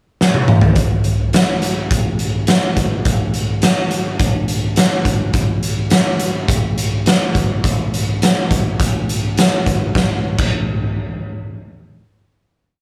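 Gritty, saturated and set in a moderate concert-hall reverb with a touch of small-room ambience, this complete short rock piece at 104 BPM in a straight 4/4 is a restless, anthemic showcase for an oversized, low-tuned acoustic drum kit. The kit sits up front with a pumping big-room sound, a boomy kick, a fat snare, dark cymbals, hi-hat and toms, opening with a fill at 0.2 seconds that leads into a big verse groove before a final hit at 10.0 seconds.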